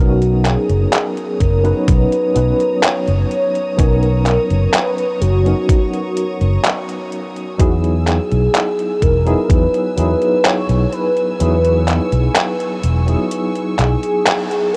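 A velvety, detuned synth lead with tape echo and chorus carries the melody over a worn, slightly out-of-tune tine electric piano with medium tremolo, a dark, round fretless bass and a rich, smooth bowed string section in this faded, woozy vaporwave excerpt at 63 BPM in B major, drifting from Bmaj9 to Emaj7, while a detuned, gritty 8-bit drum machine of handclaps and hi-hat enters at 0.2 seconds and a thumpy, overdriven kick plays from 1.4 to 9.7 seconds, under light reverb and cassette-tape haze, with a brief band accent near the close.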